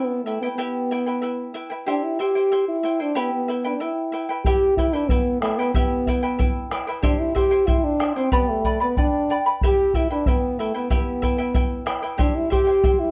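The recording is dry and intimate, captured with close, detailed microphones that bring out every string and breath. It is a short section cut from a longer Andean folk piece in E minor, moving at 93 BPM in a straight 2/4 with a festive, earthy mood. A mellow French horn carries the melody in a classical style, sitting up front with a slapback echo trailing its phrases. Beneath it, a fingerpicked charango supplies shimmering accompaniment from its double strings, some of them octave-doubled, and it sits lower in the mix than the horn. At 4.4 seconds a deep, dark bombo joins, giving the repeated phrase a grounded pulse as the harmony circles through E minor, C and G.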